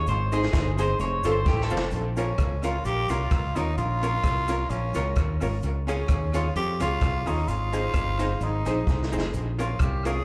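Driving and energetic, this ska excerpt moves at 130 BPM in 4/4 with a light swing on the eighths, centred on Bb dorian and cut from a longer piece heard live through a club PA with the room's ambience around it. A picked electric guitar at the edge of break-up opens with a brief clean solo over Ab and F, and a drum fill at 1.5 seconds leads into the second section. From there a breathy, raspy tenor saxophone takes the melody up front from 2.2 seconds, close-miked and gritty, carrying dub echo, plate reverb and slapback echo as the chords move through Bbm, Db and Ab. Underneath, a dark, round fingered bass sits up front, while a swinging big-band kit with a punchy kick, medium-tuned snare, hi-hat and rim clicks sounds distant and roomy, adding another fill near 8.9 seconds. In the background, a hollow-body archtop guitar plays clean accompaniment and a jangly, metallic tack piano adds short stabs, both with the same echoes and plate reverb, while a grainy cabasa sits low in the mix.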